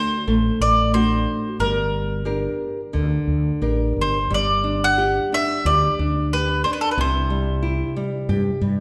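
The rhythm is loose and rubato, drifting around 90 BPM in 4/4 in this short fado-style ballad cut from a longer piece, its mood passionate and mournful. A bright, woody mandolin carries the melody up front, picked on doubled strings in a high register. Beneath it a small, boxy nylon-string guitar is fingerpicked as accompaniment, and a mellow fretless electric bass enters at 0.3 s with a dark, round, directly amped tone. The harmony moves from D to G minor, then turns to G major at 4.3 s before reaching C, with the tuning set a touch high at A4 = 445 Hz. The mandolin falls away at 7.9 s, leaving guitar and bass to close, all of it bathed in the long, wet reverb of a church or concert hall.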